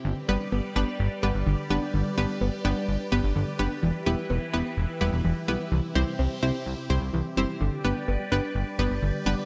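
A glossy, up-front chorused synth bass anchors this bright, upbeat synth-pop excerpt in G major at 127 BPM, its retro pulse-and-saw tone carrying a plucky filter bite over chords moving from G to Em, C and back to G. A round, full-bodied analog pluck enters at 0.3 seconds with chorused accompaniment, while a soft, nasal, darker pluck plays arpeggios through chorus and digital delay. Behind them a swirling, evolving phased pad holds sustained chords, all set in a lush hall reverb with lossy compression artefacts.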